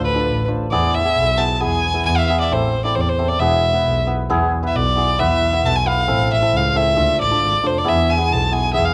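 Klezmer in a straight 2/4 feel, festive yet bittersweet, cut from a longer piece and heard as a home cassette recording with light studio reverb. Up front, a single bowed violin carries the melody with a biting, intense vibrato, while a bowed double bass sits close by with a floating, pure tone played sul tasto. A hammered dulcimer, mellow and shimmering, rings beneath as accompaniment from 0.1 seconds, with both the violin and dulcimer colored by cassette tape.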